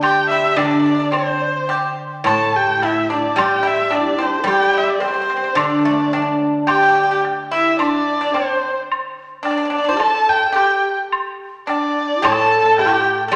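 In a rubato 2/4 at 109 BPM in D shang mode, this graceful, festive Chinese chamber excerpt puts a dark, woody bowed erhu up front with vibrato and portamento on the melody, while an airy, hollow low xiao of end-blown bamboo and a dry, percussive fingerpicked pipa carry second lines, a silvery, ringing guzheng accompanies until 7.3 s and returns at 12.2 s, and a close woodblock sits in the background, the ensemble set in a recital hall reverb of 1.6 seconds.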